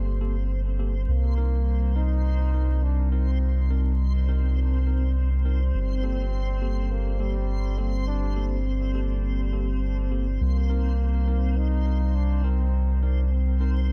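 Ambient music with a hazy, deep mood, cut from a longer piece and set in a loose, swung 4/4 that drifts between G minor add9 and C minor seventh chords. A round, soft dub sub bass sits up front with a fast attack and sustained notes, anchoring the low end. Behind it, a dark, moody pad holds sustained chords through chorus, reverb and a gritty, vintage sampler character. A bright, clean tine electric piano adds stabs that trail off in dub echo, while a reversed, swelling texture shimmers dreamily in the middle register. At 1.1 seconds a close-miked trombone enters with a solo melody in classical style, its tone warm with light vibrato and its phrases echoing until it falls silent at 13.0 seconds, all within an echo-heavy mix dusted with vinyl crackle.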